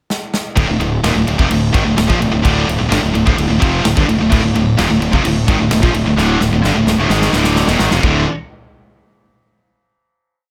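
Relentless and epic, this short heavy metal piece in D phrygian at 129 BPM opens with a drum fill on a big, airy rock kit with punchy kick and bright cymbals before two high-gain guitars, one up front and one in the background, launch a distorted power-chord riff at 0.6 seconds over a fuzzy, driving eighth-note bass that doubles the riff, with a compressed, double-tracked overdriven guitar joining at 4.3 seconds and a second fill leading into a final D5 chord at 8.0 seconds, all in light reverb.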